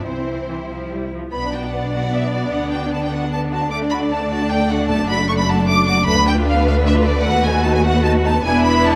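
A string orchestra opens together at once, starting on a C chord before settling into B minor at 1.3 seconds, in a quick, restless and stormy classical-period movement at 150 BPM in 3/4 with a rubato feel, cut from a longer piece. Up front, the first violins carry a smooth, even melody with vibrato, while the second violins add a lush, expressive line and the violas supply an intense, clear accompaniment with light vibrato. Beneath them, the cellos give a focused, rich bass alongside a smooth chamber double bass section, all bowed in a recital hall of moderate reverb as the harmony moves toward B7/D# at 7.3 seconds.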